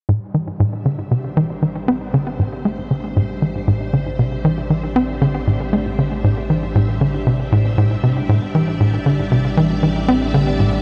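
A tight, punchy sequencer bass riff and a lush string machine ensemble begin together at 0.1 s, the bass sitting up front with a nasal, plucked sawtooth edge and tape echo while the vintage strings hold a sustained Am7 chord and fade in under ensemble chorus. This is cosmic, hypnotic, sequencer-driven space music at 117 BPM in A minor, cut from a longer piece, with a filter sweep running through the bass for the whole passage. At 1.4 s a low analog drone enters on A1, evolving and resonant with chorus, and a huge ambient reverb gives the dark, warm production a vast sense of depth.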